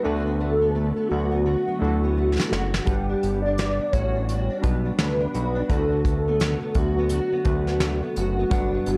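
Sunny and nostalgic, this short cut of indie bedroom pop moves with a gentle swung feel. A velvety synth lead carries the melody, its detuned sawtooth and sine sub octave colored with vibrato and chorus. Beneath it, a fingerpicked, plugged-in jumbo steel-string acoustic guitar sounds full-bodied with a warbly pitch drift, while mellow lo-fi synth keys sit in the background with a cassette-tape coloring. A thick, wave-folded analog bass with a filter sweep sits up front. At 2.4 s a brushed drum kit joins with a punchy kick, a fat snare and hi-hat, its top rolled off. The harmony drifts from D6 to Gmaj7 and back, all inside a dark, warm production with light reverb.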